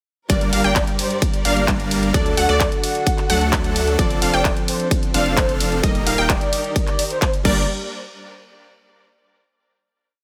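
A light reverb gives this short festival progressive house piece a polished, spacious studio sound, with an emotional and powerful mood at 130 BPM in G minor. From 0.3 seconds the drop arrives at once: a punchy, up-front electronic kick drives a four-on-the-floor pulse beneath programmed claps, closed and open hats, ride and crash from a big-room dance kit, while a deep, thick, saturated sub bass follows the chord rhythm through Gm, D, F6 and Eb. A fingerpicked steel-string acoustic guitar plays held chords with syncopated pushes, its fresh strings and finger squeaks heard through a digital delay and sidechain pumping. A huge, detuned supersaw lead sits in the background with a euphoric, rhythmic chord riff in open voicing, and a lush, bright unison pluck with vintage 12-bit sampler grit doubles the chords in high arpeggios. A very quiet string section adds a smooth, bowed pad, and from 0.6 seconds a breathy, flute-like synth lead with vibrato, ensemble chorus and cassette-tape colour floats short answering phrases on top. 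At 7.7 seconds the drop gives way to a final hit that closes the piece.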